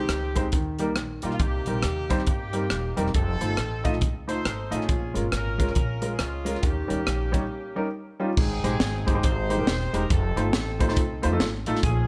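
A light reverb wraps this short, uplifting and reverent uptempo gospel cut, swinging at 138 BPM in Ab major over a progression that moves through Cm7, F7, Bbm7 and Eb7 before arriving at Abmaj7 and then F7. An up-front, crisp fusion kit with a high-tuned snare, punchy kick, hi-hat, rim clicks and crash cymbals drives it alongside a woody pizzicato upright bass, while an intimate concert grand with deep lows and audible action noise carries the accompaniment. A warm, distant pop-style horn section with light vibrato sings the melody, and a brief break at 7.5 seconds sets up the new section at 8.4 seconds.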